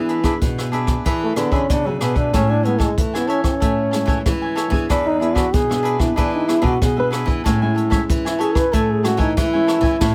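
Lively and joyful, this samba and choro excerpt moves at 94 BPM in A major, with a crisp picked cavaquinho and a bright fingerpicked nylon-string guitar moving through E7 and Amaj7 changes, a thumb-plucked nylon-string guitar holding the bass in the background, and an up-front jazz brush drum kit with a boomy kick and rim clicks, while a mellow trombone enters at 1.2 seconds with a jazz-style solo full of scooped notes and light vibrato, all set in light reverb.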